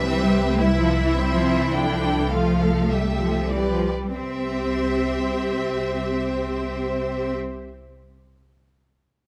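Set in a moderate scoring-stage reverb, this spirited, cheerful excerpt of a quick classical-period movement for string orchestra in C major, at 94-108 BPM in a straight 4/4, eases into a slowdown over its first 4.1 seconds as a rich, smooth violin section carries the melody, a dark, woody second violin section with a soft attack adds a second line, violas supply expressive accompaniment with portamento, focused cellos and up-front, lush double basses hold the bass with vibrato, and the harmony moves from C to G7(no3)/C and back to C.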